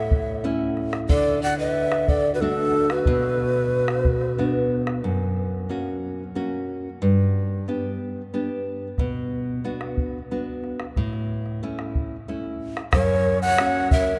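Andean folk in B minor at 91 BPM in 3/4, wistful yet festive, this fragment of a longer piece places a breathy, reedy shakuhachi melody with vibrato up front over a hollow, chiffy pan flute second line, both falling silent at 4.7 seconds and returning at 12.9, while a fingerpicked classical nylon-string guitar carries the accompaniment throughout and a round bombo pauses mid-way before rejoining at 9.0, the ensemble set in a long cathedral reverb that evokes a vast, echoing space.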